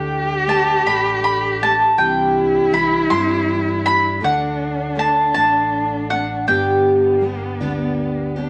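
Hopeful and nostalgic, this short fragment of acoustic folk sways in 6/8 at 53 BPM (dotted quarters): an up-front, woody, double-strung mandolin carries the melody until 7.9 s, an up-front, nasal and boxy bowed cello sings an expressive second line with vibrato and portamento, a bright, full-bodied jumbo steel-string guitar picks the accompaniment, and a dark, round, amped electric bass sits beneath, while the harmony moves through Dsus4, Cadd9, D and G in a wet studio reverb.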